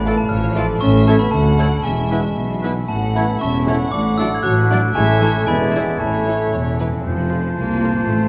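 Quirky and mischievous, this cinematic orchestral fragment sets a sparkling, bell-like glockenspiel melody, which drops out at 6.5 seconds, alongside a vibrato-rich violin section on the tune, while an airy flute, clear oboe, bright clarinet and a very quiet second violin line weave secondary parts, lush violas and a warm bassoon fill in the accompaniment, a mellow French horn section holds sustained chords, a harp ripples ringing arpeggios, and a dark tuba joins cellos and double basses in the bass, all bathed in moderate scoring-stage reverb with a shadowy production.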